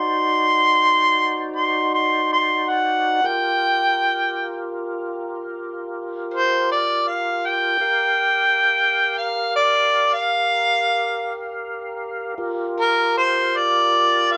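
A mellow harmonica and a tonewheel organ sound together from the start of this mournful, soulful slow blues in a straight 12/8, the harmonica singing the melody up front with light vibrato, soft attacks and scooped notes in a vintage, jazz-inflected style. Beneath it, the organ holds fat, lightly overdriven chords coloured by chorus vibrato, key click and a slow rotary speaker, moving from D7b9 to Gm7 at 3.2 seconds. The pair play live in one room with moderate studio reverb, and the passage is cut from a longer piece.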